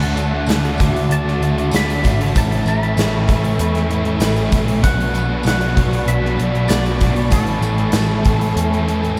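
A dreamy mix soaked in huge ambient reverb opens this wistful, blissful stretch of shoegaze and dream pop, cut from a longer piece. A gated 80s drum kit sits up front with a punchy kick, a medium-tuned snare, hi-hat and a bright stone-room sound, while a round, foam-muted vintage electric bass holds the low end. Two guitars drive the riff: a biting overdriven guitar touched with reverse reverb, and a thick, dark fuzz guitar with analog chorus tucked into the background. Above them a moody analog pad, detuned and wave-folded with a slow attack and chorus, sustains chords, and a twangy, clean, fingered electric guitar carries the melody in the background through lush chorus and diffuse ambient delay. A jingly, very quiet tambourine slips in at 0.2 s, and the harmony moves from Dadd9 to Aadd9, Bmadd9 and back to Aadd9.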